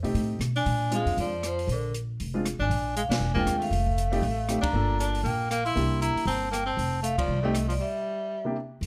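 A light reverb frames this short cut from a longer piece of small-group swing and bop jazz, sophisticated and playful at a brisk 235 BPM in 4/4 with a swung eighth-note feel. Woody, thumpy pizzicato upright bass on steel strings sits up front, joined by a dark, smooth drum kit in a small room with hi-hat, punchy kick, ride with dark cymbals, rim click and a medium-tuned snare. Meanwhile a present grand piano with short sustain comps through changes from a rootless F7 to Bb7, Gm7 and C7. At 0.6 seconds the vibraphone, struck with medium mallets and its motor off, takes the melody with a metallic, ringing tone and the boxy sound of a small room. Alongside it a clear tenor saxophone with vibrato and a soft attack plays a lower second line. The band hits accents together at 3.1 and 4.6 seconds before a break from 7.8 seconds over a final C7.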